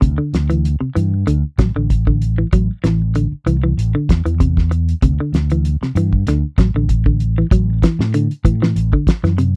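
Afrobeat at 96 BPM in 4/4 with a light sixteenth-note swing, this short cut from a longer piece feels intense and defiant, played as a dry, close 1970s-style studio recording. Up front, a clean, hollow-bodied semi-hollow electric guitar spins fingered arpeggios over D5 and Am, while a punchy, amped fingered bass holds the low end and a cloth-damped, thuddy drum kit pushes a fat snare, tight kick and hi-hat with a dark, rolled-off top. At 7.5 seconds the music shifts into a new section as the harmony moves to Dadd9/A and then D7/A.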